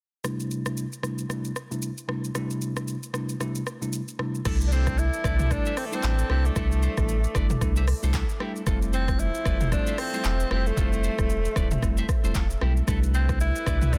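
Afrobeats at 114 BPM with a swung sixteenth-note feel in C major, romantic and breezy, opening on a bell-like tine electric piano under a filter sweep alongside a deep house drum kit of deep kick, smooth hats, handclaps, rim click, shaker, toms and crash, its snare softly clipped. At 4.5 seconds a round sine sub bass arrives up front with a punchy horn section and a twangy, slightly broken-up electric guitar riff with digital delay set in the background, and from 4.7 seconds a breathy, whispered tenor saxophone carries an intimate melody with scooped notes and vibrato. A dark, detuned ambient pad enters very quietly at 7.3 seconds as the chords move from C6/9 to Fmaj7 and back, all in a dry, dense, heavily limited modern mix cut from a longer piece.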